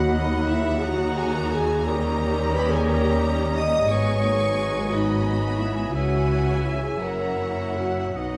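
A mellow French horn section sits at the front of this serene, lyrical classical passage, holding sustained chords through its full 8.4 seconds. Above it, a rich chamber violin section carries the melody with focused vibrato, surrounded by several second lines: a bright oboe, a very quiet, dark clarinet that sounds distant and roomy, an airy flute ensemble in the background, and a lush symphonic violin section with a smooth top. The accompaniment comes from a softly vibrating bassoon and a background viola section that slides expressively between notes with portamento. Cello and double bass sections anchor the bass with bowed, expressive vibrato, the cellos soft in attack and the basses full-bodied. At 58 dotted-quarter beats per minute in a rubato 6/8, the harmony moves from D#m through D#7 and G#m7 to C#m and F#7. A moderate scoring-stage reverb gives the ensemble a spacious, blended sound in this brief cut from a longer piece.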